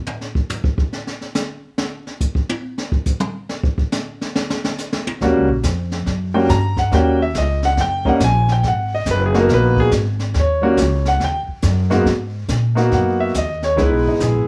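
Set in a small room with light reverb, this swinging, smoky jazz piano trio cut in G# minor at 140 BPM opens with the up-front brush kit alone, its high-tuned snare and boomy kick played with brushes. At 5.2 seconds the clear concert grand piano enters with deep bass and long sustain, soloing until 12.1 seconds, while the woody, thumpy gut-string upright bass is plucked underneath. The chords move from D#7#9 through G#m9 and D#m7, back to G#m9, before closing on C#m9.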